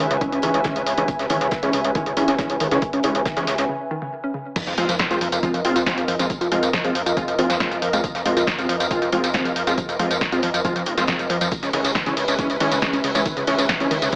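Intense, industrial peak-time techno at 138 BPM in a straight 4/4, cut from a longer piece, where a gritty, saturated sawtooth bass and a punchy analog drum machine pump under sidechain beside an electronic kick, alongside a woody, wave-folded pluck riff in the background, a breathy, nasal pad, thick detuned rave stabs with tape echo and a very quiet, dry 70s kit, all dressed in plate reverb and an AM radio tone, before a break at 3.7 s gives way at 4.6 s to a drop marked by a very quiet impact as the chords move from Dbm to Fm and back to Dbm at 11.5 s.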